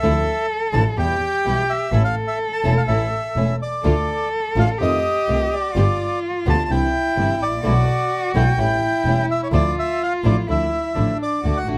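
Tango with a dramatic, melancholic mood, this short excerpt moves in a flexible, rubato 4/4 over a harmonic-minor progression that returns to its opening chord near 9.5 seconds. A reedy, dark bandoneon carries the smooth melody up front, while a solo bowed cello sings a nasal, expressive second line beneath it with vibrato and portamento. A fingerpicked flamenco guitar on fresh strings supplies the accompaniment, its finger squeaks audible in the close, detailed sound. A single bowed double bass anchors the low end with a focused, boxy tone and vibrato, sitting prominently in the mix. In the background, an earthy chamber string section adds bowed stabs with light vibrato, and the whole recording is dry, with little reverb.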